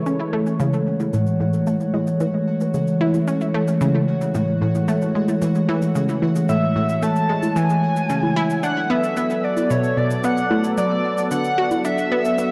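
A bright, up-front pulse-width lead with a shimmering, retro pulse-wave tone enters at 6.5 s, carrying the melody over this hypnotic, cosmic space-music excerpt at 112 BPM in a straight 4/4. Beneath it, a round, detuned analog pluck with a fast attack and decaying filter plays a sequencer-like riff, treated with chorus and tape echo, while a sweeping resonant pad of evolving, detuned sawtooth and sine layers holds sustained chords with a slow attack and long release. Electronic cabasa and congas, re-recorded in a small room and given tape echo, fade in from 0.1 s. A very quiet pulsing gated texture of tempo-synced unison triangle tones sits high in the background with its own built-in reverb. The harmony moves from Amaj7 to Bm7 at 8.6 s, all set in a wet concert-hall reverb with a dark production, and the passage is cut from a longer piece.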